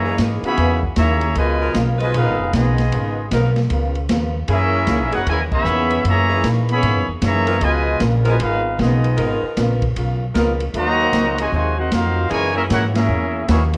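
A clear, vintage-toned trumpet section carries the melody up front in this energetic, brassy big band swing excerpt at 153 BPM, with a dark trombone section on a second line and a bright saxophone section holding sustained chords in the background over Gb13, Db13 and Ab13 harmony. A woody, thumpy pizzicato upright bass sits up front, a boxy picked archtop guitar with finger squeak plays accompaniment in the background, and an open jazz drum kit with dark cymbals and a boomy kick comes in at 0.2 s, with the full band hitting accents at 5.5 and 12.9 seconds. The whole excerpt sits in a moderate large studio reverb and carries the worn, warbling pitch drift of old cassette tape.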